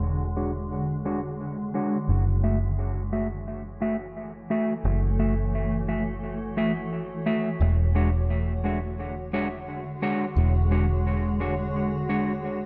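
A straight, unhurried 4/4 pulse at 87 BPM sets the pace for this deep, meditative ambient piece, heard as a 12.7-second portion of a longer work. A fingered electric bass sits up front throughout, its foam-muted, direct-and-amped tone holding low in the register around E1 to F#1. Alongside it, a granular cloud pad sustains chords the whole way through, its blurred, evolving texture shaped by slow attacks, long releases and its own built-in reverb. From 0.4 seconds a mellow electric guitar adds dark, clean, fingered stabs, also placed up front and trailed by dub echo. The harmony moves from E13 to F#m7 at 2.1 seconds and returns to E13 at 7.6 seconds. A filter sweep runs across the entire passage, and the echo-heavy, low-pass-filtered mix sits in a moderate spring reverb that lends the sound a hazy depth.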